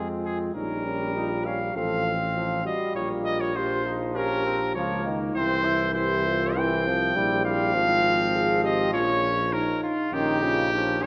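A wet concert hall reverb surrounds this solemn, heroic classical brass quintet excerpt in F minor, moving at a rubato 100 BPM in 4/4 and cut from a longer piece. A warm, vintage-toned trumpet carries the melody up front, while a mellow second trumpet, a dark, punchy French horn and a bright, present trombone sit in the background. A tuba with light vibrato and a smooth top anchors the bass through chords that move from Fm and Bbm to C before closing on Gdim/Bb at 10.1 seconds.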